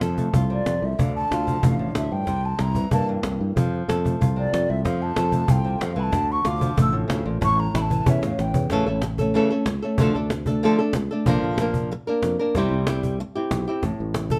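A moderate studio reverb frames this fiery, passionate flamenco excerpt at 187 BPM, where an up-front fingerpicked flamenco guitar with audible finger squeak carries the melody over a growly, sustaining fretless electric bass and a woody cajon with faint snares and soft hands, while a distant, breathy wooden flute with unsteady vibrato plays a solo until 8.7 seconds, as a cajon fill rounds off the first section, leaving the guitar, bass and cajon to move through a new section over Dm, Bb and C.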